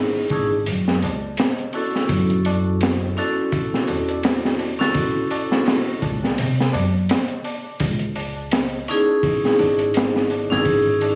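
A swung 84 BPM breakbeat in 4/4, crunchy and gritty with a punchy kick and high-tuned snare up front, enters at 0.3 s in this smoky, cinematic trip hop excerpt in C# minor, alongside a short-ringing, high-tuned tabla in the background, while the woody pizzicato upright bass and a bright, metallic vibraphone with slow motor vibrato, harmonic tremolo, tape echo and a low-pass filter sweep play from 0.0 s through C#madd9 to F#m7 and back, the whole mix carrying vinyl crackle and the roomy sound of a phone recording.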